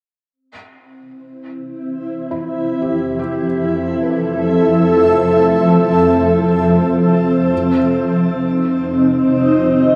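This serene ambient passage, taken from a longer piece, rests on Fmaj7 as a cloudy, detuned granular pad with a soft sine-like glow and slow attack settles up front at 1.6 s, evolving through its built-in reverb and shimmer. At 2.3 s a felt-muted upright piano fades in behind it with quiet arpeggios, intimate and mellow, its action noise audible beneath dub echo and shimmer. The harmony moves to Abmaj7 at 7.5 s, all within an echo-heavy mix bathed in a wet spring reverb and dark, rounded highs.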